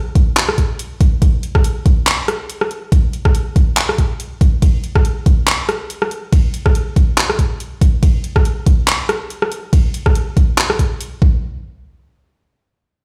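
A knocking, overdriven electronic kick sits up front through this bright, lush future bass drop, cut from a longer piece, with a half-time feel and a light swing on the sixteenths. A layered pop drum kit of handclaps, warm hi-hats, ride cymbal and rim clicks, also overdriven and close, runs alongside it until about 11.1 seconds, and the kick carries on to 11.3 seconds. The sound is largely dry, yet it carries the stony ring of a bare room, as if played back over a big sound system.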